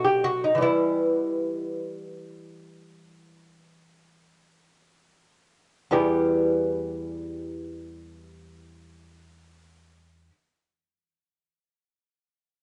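Classical baroque-style dance for solo lute in E minor, cut from a longer piece, unfolding in free time with an introspective, flowing mood that slows down over its first 5.9 seconds. The lute sits up front, its bright, delicate gut strings fingerpicked on doubled courses, some octave-doubled, ranging from E2 to G4 and sounding from 0.0 to 10.3 seconds, with a B5 chord opening onto E minor at 0.6 seconds. Recorded at home on cassette tape, the sound carries light reverb and small-room ambience, with the top end rolled off above 11.0 kHz.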